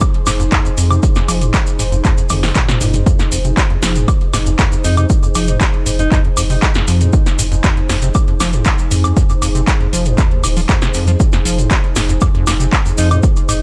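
This gritty, trippy acid house excerpt opens on a dry, punchy electronic kick sitting up front, joined at once by an analog drum machine with a punchy snare, metallic hats, handclaps, toms and woodblock, plus grainy, saturated maracas touched by analog delay. Beneath them a squelchy, resonant square-wave acid bass riff with a plucked filter attack sits in the background, pumping against the kick and trailing dub echo, while a warbling, nostalgic, lo-fi pad of detuned sawtooth and triangle tones drifts in slowly with chorus. From 0.3 seconds a deep, thick sine sub bass adds tube-saturated weight, also breathing with sidechain pumping. A short drum fill breaks the groove around 2.3 seconds. At 4.8 seconds a clear alto saxophone enters for a brief solo phrase, its smooth, classical-style tone carrying vibrato, 12-bit sampler grit and tape echo, before returning for a fleeting moment near the end. 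The whole mix is bathed in echo-heavy digital ambience, holding on an F minor chord throughout this cut from a longer piece.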